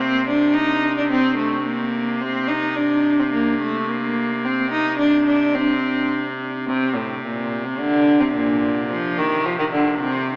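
A straight 2/4 pulse at 108 BPM drives this mysterious medieval dance in C dorian, cut from a longer piece, with a new section arriving at 6.7 seconds. A single bowed, fretted viola da gamba carries the melody up front with a biting gut-string tone and light vibrato, while a pipe organ's hollow clarinet stop holds a drone on C3 beneath it, its baroque voicing marked by a chiff. The players sound live together in a cathedral with long, wet reverb, heard through a small speaker.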